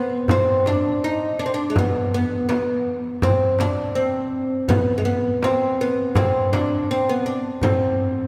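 A wet church reverb with a 2.9-second decay surrounds this short passage cut from a longer Arabic maqam ensemble piece, lending it the long, airy resonance of a church or concert hall. The mood is melancholic and full of longing, moving at a steady 82 BPM in a straight 4/4. Up front, a fretless oud carries the melody from the opening moment, its plectrum-plucked double strings sounding bright and woody within a narrow span from Ab3 raised by 25 cents up to Eb4. Beneath it, a large, deep darbuka with a clay shell and natural skin sits in the background, its acoustic tone carrying a small-room character. A warm frame drum, struck with hard hands, joins at 0.3 seconds and falls away at 7.8 seconds, just before the oud and darbuka finish together at 8.3 seconds.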